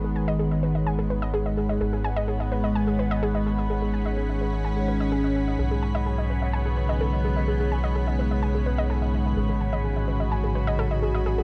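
Hypnotic and driving, this techno excerpt moves in a straight 4/4 and is cut from a longer piece. A deep, round analog bass sits up front, its dark, nasal tone thickened by tube saturation. Above it, an evolving wavetable pad holds sustained chords that morph through chorus and its own reverb, moving from B69/G# to Bsus2 at 5.6 seconds and A6 at 9.4 seconds. A warbling, dusty pluck spins lo-fi arpeggios through chorus and dub echo, while a mellow analog drone hums in the background with a moving notch. An airy, breathy pad adds a soft, bright shimmer through chorus and phaser, and the whole mix sits in a light reverb.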